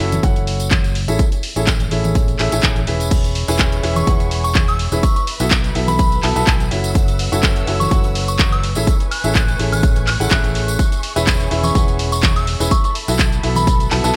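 A groove at 125 BPM with a light swing on the sixteenths drives this bittersweet, soulful piano house cut, built on an overdriven electronic kick sitting up front, a punchy analog drum machine with crash, handclaps, hi-hat and tambourine under gated reverb, and compressed, soft-handed tambourine and congas. A clear grand piano riff with delay and a growly fingered electric bass both pump against the kick through the F#m7, Amaj7, E6 and B7sus4 progression. From 3.1 seconds a veiled, con sordino violin section adds lush background chords, and at 4.0 seconds a pure FM synth bell melody with chorus and delay joins, all framed in light reverb and bright 1980s-style digital production.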